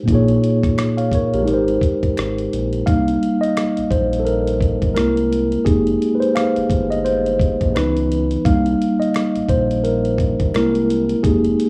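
A swung 86 BPM groove in 4/4 from a gritty, compressed sampler-style kit of thumpy kick, hi-hat and rim click drives this mellow, cosy lo-fi hip hop cut from a longer piece, with finger snaps sitting close and dry in the background. A clean, up-front tine electric piano carries the harmony over jazzy chords such as Abmaj9, Fm11 and C7b13, then takes a solo from 2.9 seconds, while a smooth sawtooth-and-triangle synth bass holds sustained low notes beneath it. The rough home-demo mix has light reverb and small-room ambience.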